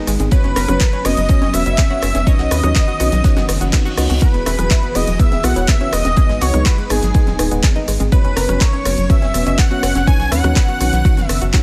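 A straight 4/4 pulse at 123 BPM drives this expansive, dreamy progressive house excerpt, anchored by a deep, layered electronic kick sitting up front with studio reverb. Around it, a deep house kit adds handclaps, dark hi-hats, rim clicks and shaker. A very quiet acoustic rock kit with a fat snare, hi-hat, ride and a rolled-off top sits underneath, while electronic rim click and congas with a tape-saturated, small-room character pump in the background. A tight, punchy sawtooth sequencer bass pumps against the kick, and behind it a breathy, slow-attack pad, a round analog pluck arpeggio and a nasal, full-bodied chord stab carry the harmony through F#sus4, Badd9, Eadd9 and G#m, each with chorus and sidechain pumping. On top, a thick, bold unison lead with vibrato, cassette-tape colour and delay carries the melody, while a soft, shimmering second lead plays a line an octave higher. A reverse cymbal sweeps in from 3.5 to 4.2 seconds, and the mix stays dry and close overall.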